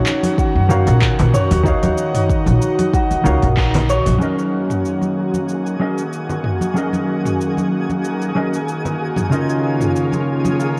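Sunset chillout with a warm, smooth mood, where a dark, clean electric guitar, an airy, breathy pad and a bright, thumb-plucked harp drift over a deep house kit of cabasa, handclaps, smooth hats and toms, soft-handed congas, a deep electronic kick and a woody upright bass that both drop out by 4.2 seconds, before a twinkling granular shimmer enters at 4.9 seconds, all under plate reverb and worn, warbling cassette tape.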